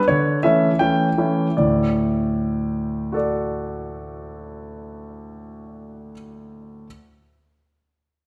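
A clear grand piano sits up front and intimate in a wet stone room, its 1.3-second reverb trailing each phrase, and the natural sound lets the audible action noise of the instrument come through. This is a short cut from a classical-period piano sonatina in D major, playful and graceful in mood, set in 2/4 at 78 BPM with a rubato feel. The solo piano carries everything from its start at 0.0 seconds, ranging from D2 up to G5. The opening phrase slows down through its first 1.6 seconds over an A7 chord with D in the bass. At 1.6 seconds a new section begins on a D major chord and runs until 4.6 seconds, and the piano plays on until 6.9 seconds.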